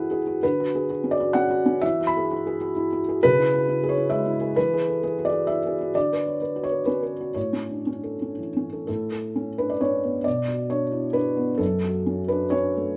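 A felt-muted upright piano plays alone from 0.0 to 13.0 seconds in this wistful, intimate neoclassical minimalist excerpt in B dorian, moving in a rubato 3/4 around 115-137 BPM, its soft, mellow tone sitting up front with audible action noise in light reverb as chords drift from Bmadd9/D through Eadd9 and C#m before a second section from 8.9 seconds turns to Aadd9, Bm and F#m.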